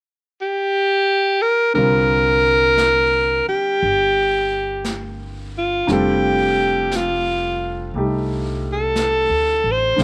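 Wistful and smoky, this fragment of a swung jazz ballad opens with a bright, breathy alto saxophone carrying the solo melody up front with scooped notes at 0.4 seconds, before a clear, intimate upright piano with audible action noise and a boxy tone, a distant, roomy brushed drum kit, and a growly, woody pizzicato upright bass join around 1.7 to 1.8 seconds, settling onto a C9sus4 chord that moves to F13 at 5.9 seconds within a small room ambience.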